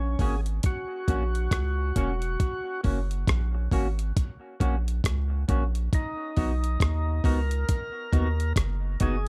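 A compressed, sampler-style breakbeat kit sits up front with a thumpy kick, hi-hat and rim click, driving this uplifting roots reggae excerpt at 68 BPM in F# mixolydian with a swung sixteenth feel. A deep, round sub bass holds the low end beneath a thick, overdriven tonewheel organ melody that carries key click, percussive third-harmonic attack and a slow rotary speaker, bathed in dub echo and plate reverb. A dark, clean electric guitar adds fingered accompaniment through lush chorus, dub echo and plate reverb as the harmony moves from F# to B at 5.9 seconds.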